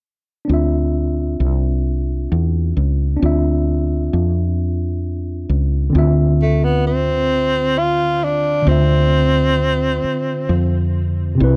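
A dry, close studio sound with a 1970s feel frames this yearning, late-night excerpt of slow six-eight R&B, resting on a Dm9 chord. A worn, slightly out-of-tune tine electric piano, lightly overdriven through its built-in speakers, carries the accompaniment from the start, while a woody, round fretless bass sits dark and up front beneath it. At 6.4 seconds a breathy tenor saxophone enters with a jazz-style solo, soft in attack, with vibrato, scooped notes and tape echo, and it falls silent at 10.9 seconds.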